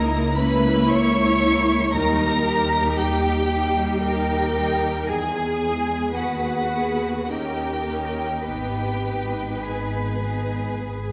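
The first violin section leads from up front with a smooth, even melody high in the treble, its vibrato lush against the reverberant space of a concert hall. This is a slow, solemn romantic movement for string orchestra in G# minor, moving in a rubato 3/4 at around 50-58 BPM with a yearning character, cut from a longer piece. Beneath the melody, a more distant second violin section carries an intense, clear second line, while the violas fill in the accompaniment with expressive portamento. The cellos sit back in the blend, even and lush, and the double basses anchor the harmony from up front with a full, bowed depth. The chords pass from A#dim/C# through D#, E, G#m/D# and D#7 before settling on G#m at 8.5 seconds, and the whole ensemble plays together throughout the 11.1 seconds under a soft, dark top end.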